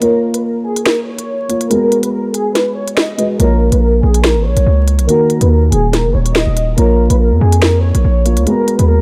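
Dry, with a bed of vinyl crackle, this ominous, cold drill cut sits at 142 BPM in a half-time feel, moving through Bbm, Abm7 and Ebm in Bb phrygian while a filter sweep runs across the whole passage. A studio violin section carries the floating, sul tasto melody over a low-passed concert grand whose mellow, vintage tone and audible action noise give the accompaniment an intimate shade, both muffled by their own low-pass filters. Produced drums with finger snaps, crisp hats and a sharp snare play up front through the opening break, and a punchy, sine-heavy 808 bass with a fast attack hits hard from 3.4 seconds.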